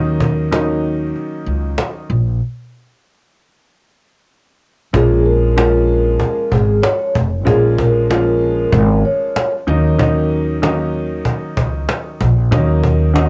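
Swinging at 95 BPM in 4/4, this reflective, moody boom-bap hip-hop cut in Bb minor rides a woody cajon with faint snares and 12-bit sampler grit, a pizzicato steel-string upright bass and a dark, mellow upright piano colored by cassette tape, easing into a break at 2.4 seconds before a metallic, airy soft-mallet vibraphone with slow motor vibrato and tape echo carries the melody from 5.0 to 9.5 seconds, all within a lightly reverberant home-cassette sound.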